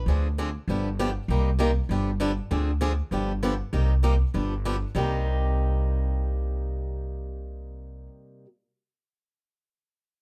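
A woody, thumpy pizzicato upright bass on gut strings opens this fiery, virtuosic fragment of acoustic string swing in C minor at 197 BPM, joined at once by a bright, boxy picked guitar with audible finger squeak, both placed up front in a close, dry, detailed sound as they cycle through Dm7b5, G7 and Cm7 before a second section begins at 4.9 seconds.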